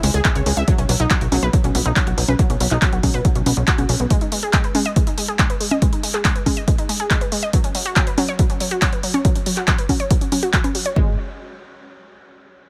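A lush, detuned unison pluck opens this driving, euphoric uplifting trance passage at 140 BPM in 4/4, spinning bright arpeggios with sidechain pumping and tape echo, alongside a funky, wave-folded analog bass, a barely audible downlifter, and a tape-warm analog drum machine of congas, handclaps and hi-hat, with a punchy electronic kick arriving at 0.2 seconds. The harmony moves through C#5, B5, G#5 and F#5, and the pumping bass drops out at 4.1 seconds, returning briefly at 11.0 seconds as the chords fall away. The drums and bass sit up front in a dry mix, and the clip is cut from a longer piece.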